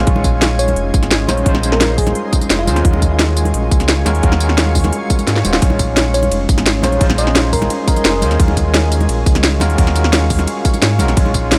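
Crisp hats, a cracking snare, ride, tambourine and a tight layered kick drive this soulful, dreamy liquid drum and bass excerpt at 173 BPM in a straight 4/4, with a drum fill at 5.3 seconds, hard-handed congas and bongos in the background, and a deep sine sub bass with octave anchoring alternating Bbm11 and Ebm11 chords, while a barky, overdriven tine electric piano with medium tremolo and dub echo comps alongside a shimmering, granular ambient pad with chorus and sidechain pumping, and a round, gentle FM synth lead with tape echo and vibrato enters at 0.6 seconds and returns at 6.1 seconds.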